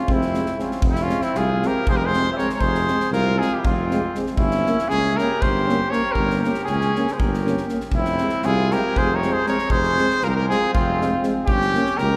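Driving along in 7/8 at 236 BPM in eighths, this virtuosic, bittersweet Balkan brass band passage in F harmonic minor, cut from a longer piece, sets a distant, up-front trumpet melody over a vintage-toned flugelhorn second line, with close-miked trombone and warm euphonium accompaniment tucked into the background, a roomy tuba carrying the bass, and a gated 80s drum kit of punchy kick and medium-tuned snare adding polished, airy snap, all of it bathed in a long, wet church reverb as the harmony moves between Fm and Gdim.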